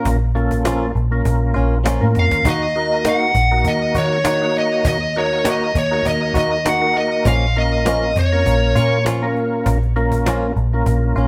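Straight-eighth soul blues with a soulful, brooding mood, this short excerpt opens on a percussive tonewheel organ, lightly overdriven and turning through a slow rotary speaker with chorus vibrato, joined by a round, foam-muted vintage bass up front and a snappy, close cajon. A bright, twangy clean guitar recorded direct adds compressed stabs from 0.7 seconds. Alongside a drum fill, a smooth, dark overdriven lead guitar carries the melody from 2.2 to 9.0 seconds with tape echo, as the band moves from Bb minor to Eb minor and back, playing live in a stone room.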